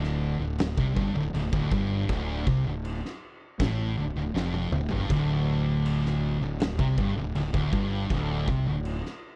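Up-front thick fuzz guitar drives a dark, picked, distorted riff in this brooding, ominous stoner and doom metal excerpt, alongside a very quiet second fuzz guitar and a double-tracked third that enters in the background at 5.1 s, over a growly, overdriven fingered electric bass and an oversized low-tuned acoustic drum kit with boomy kick, fat snare, toms and crash, saturated and gritty with a rolled-off top, that plays a fill at 4.3 s, all heard as a dry, close 1970s-style studio recording in a small room.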